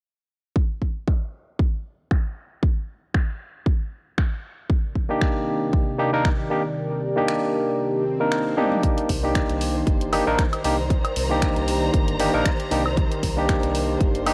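Hypnotic and deep, this excerpt of deep house in C minor runs at 116 BPM with a lightly swung 16th-note feel over a Cm7 chord. A punchy, up-front electronic kick opens the excerpt and is joined moments later by a house kit of finger snaps, hi-hat, toms and woodblock, the kit muffled by low-pass filtering while a filter sweep runs over the drums. At 5.1 seconds a mellow analog pad with chorus and slow attack arrives together with a bright, barky tine electric piano playing stabs through analog delay, both with sidechain pumping. The kick drops away at 6.8 seconds, a background electronic swell sounds, and a drum fill leads to 8.8 seconds, where a lush, bowed symphonic string section with vibrato enters, soon joined by a round, dark analog bass, both pumping as well. The kick, kit, pad, piano and strings carry a cassette tape grain, and the sound is that of a home cassette recording with light reverb.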